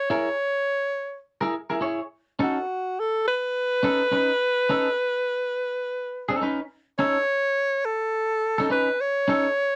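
A clear, up-front alto saxophone carries the jazz-style solo melody with vibrato and scooped notes over a twangy, compressed, picked electric guitar touched with subtle chorus in this energetic, gritty funk excerpt at 105 BPM with a swung sixteenth-note feel, moving from E6 to B9 and shifting at 7.0 s to a rootless B9, all captured in a dry, close 1970s-style studio sound with light reverb.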